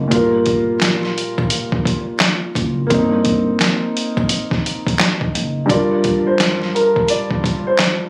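Tough and reflective, this short boom-bap hip-hop cut sits on a swung 4/4 groove. A sampler-style drum kit sits up front, compressed, pitched down and muffled, with a thumpy kick, a medium-tuned snare, hi-hat and handclaps. A dark concert grand piano, also up front, carries the accompaniment through Gm7 and Cm7/G chords with a mellow, intimate, vintage tone, deep bass and audible action noise, filtered and given a cassette-tape colour. Beneath it, a woody pizzicato upright bass on steel strings holds the low end until about 5.6 seconds. At 5.7 seconds a boxy upright piano with short sustain enters with a brief melody as the harmony returns to Gm7. The sound is dry and close, with a phone-in-the-room character.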